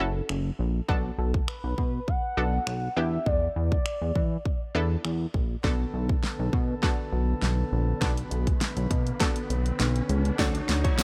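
Driving and bittersweet, this dance-pop excerpt moves in a straight 4/4 over minor seventh chords, opening on a velvety synth lead with chorus, tape echo and vibrato that carries the melody until 4.7 seconds. Beneath it, a round, warbling analog pluck with detuned sawtooth and filter sweep plays the accompaniment, while a glossy, retro synth bass sits up front with sidechain pumping. A punchy, layered pop drum kit with a fat snare, kick, hi-hat and finger snaps comes in at 0.3 seconds. From 5.6 seconds the music builds through a long drum fill as soft pipe organ flute stops with a gentle chiff add sustained, pumping chords, and a background riser rises from 8.0 seconds. Near the close, a clean, direct-recorded electric guitar riff and a jingly, very quiet tambourine join at 10.4 seconds on a major seventh chord, all wrapped in a digital ambience.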